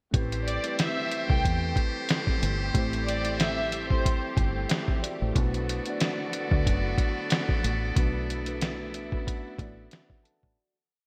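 With a bright 1980s-style digital sheen and light studio reverb, this tough, moody boom-bap hip-hop piece at 92 BPM in A dorian rides a compressed, pitched-down sampler kit with a thumpy kick and hard backbeat snare up front, a deep, round, foam-muted fingered bass looping underneath, mellow rootless tine electric piano chords with grace notes, a lush sustained string pad, a buzzy metal-muted trumpet section swelling long notes through a digital delay, and a smooth vibrato violin section carrying a short looping melody from 0.5 to 4.2 seconds, before a fade-out from 8.0 seconds under a closing electric piano fill.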